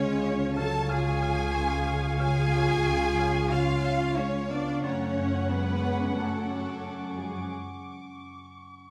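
Eerie and uneasy, this short cut from a suspense film score moves at 91 BPM in F# harmonic minor, built on a bright, hard-mallet marimba riff over a dark bowed double bass section, a rich cello section and mellow, tight French horn chords. Behind them sit violin sections carrying the melody and a second line with expressive vibrato, a smooth viola section accompaniment, glassy, ethereal glass harmonica chords and a high, lush violin texture. The harmony moves from C# to F#madd9 at 4.8 seconds. A scoring stage reverb gives the ensemble a moderate sense of space, and most parts stop at 7.5 seconds, leaving only the high violin texture to ring on until 8.9 seconds.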